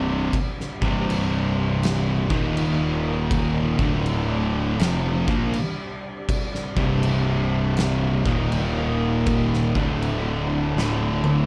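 Heavy and brooding, this stoner and doom metal passage, cut from a longer piece, crawls at 80 BPM in C minor with a swung 4/4 feel. An overdriven electric guitar, bright and double-tracked, picks a riff alongside two thick fuzz guitars that also play riffs, one dark and set in the background, the other very quiet. A growly, fuzz-laden fingered electric bass sits underneath, while an oversized low-tuned drum kit comes in at 0.3 seconds, up front and gritty, with a punchy kick, fat snare, dark cymbals and a pumping big-room sound. Very quietly beneath it all, a silky vintage string machine holds sustained chords with slow attack, phaser and ensemble chorus. The harmony moves through power chords on C, Eb and D, and the drums close with a fill from 10.8 seconds in a dark, dry production.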